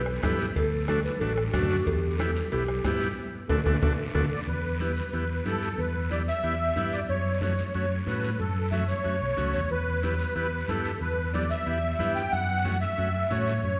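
A driving, danceable cumbia groove runs at 184 BPM in straight 4/4 in E dorian, built on round, dark fingered electric bass up front, very quiet congas, a raspy guiro, a soft-beater bombo, and ringing cowbell and timbales in the background. A breathy, subtoned clarinet carries a second line over buzzy vintage combo organ until a band accent from 3.2 s and a drum fill from 3.5 s. Then the bombo, clarinet, cowbell and timbales drop away, and a reedy, shimmering musette accordion takes the melody from 4.3 s, with wet concert-hall reverb and a muffled top end giving this cut from a longer piece a roomy sound.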